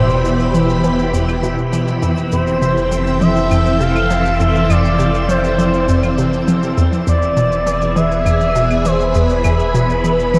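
A straight 4/4 pulse at 101 BPM drives this short, mysterious cut of sequencer-driven space music, where a hollow, bouncy square-wave pluck riff with cassette grit and tape echo sits over a round, deep analog bass, while faint tape-echoed shaker and claves join at 0.1 s. A swirling, phased string machine holds bright sustained chords moving from Em to Fmaj7 and then E, and an expressive portamento lead sings a smooth, mellow melody with vibrato up front, bathed in shimmer reverb. A twinkling granular texture sparkles in the background, and the whole piece floats in a huge cosmic reverb with the warble and pitch drift of worn old tape.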